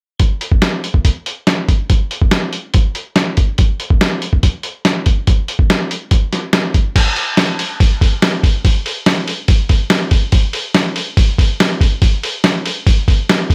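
A lo-fi sampler-style drum kit opens this bittersweet, moody rock fragment in straight 4/4, its muffled, pitched-down crash, hi-hat, thumpy kick and medium-tuned snare sitting up front with a compressed, tape-warm character and light reverb, playing alone from 0.2 to 13.5 seconds as the part moves into a new section at 7.0 seconds.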